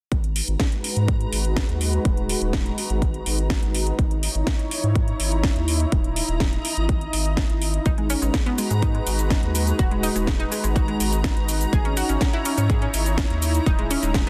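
Expansive and dreamy, this progressive house excerpt pulses in a straight 4/4 as a punchy, up-front electronic kick and a house kit of cracking snare, metallic hats and shaker drive a deep, round analog bass and a lush, detuned supersaw pad that pump with the sidechain, the pad moving through a filter sweep, while a reversed, granular swelling texture glimmers in the background and a chorused, tape-coloured analog pluck enters at 7.9 seconds with delayed arpeggios over a loop of G#m7 and C#madd9/G#, all in a dense, heavily limited modern master.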